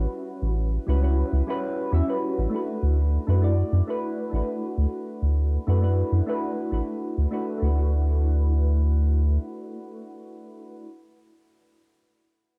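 This home cassette recording is set in a moderate studio reverb. It is a blissful, smooth sunset chillout fragment in D major, moving at 100 BPM in a straight 4/4 and cut from a longer piece. Soft, gentle electric-piano-like synth keys carry the accompaniment up front, their dark, decaying tones coloured by chorus, phaser, analog delay and a low-pass filter that sweeps until 7.6 seconds. Beneath them, a round analog bass sits close and forward, deep and nasal with a touch of tube saturation, before dropping out at 9.4 seconds. The harmony moves from an A13 chord to D6, and a brief second section arrives as the filter sweep ends, while the keys ring on alone to the close.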